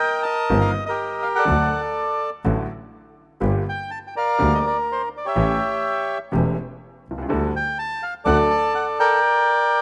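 A reedy, dark bandoneon opens this tense, melancholic tango fragment, carrying the melody up front with a smooth tone in a free, rubato 4/4. At 0.5 seconds an upright piano and a bowed double bass join beneath it. The piano sounds woody and intimate, its action noise audible as it accompanies across a broad span down into the low register. The bass, a single player, is biting and earthy with light vibrato. The harmony moves through minor and dominant chords, pausing on a suspended chord before resolving home. Piano and bass drop out at 8.5 seconds, leaving the bandoneon alone briefly in a small room with light reverb and the rough feel of a home demo.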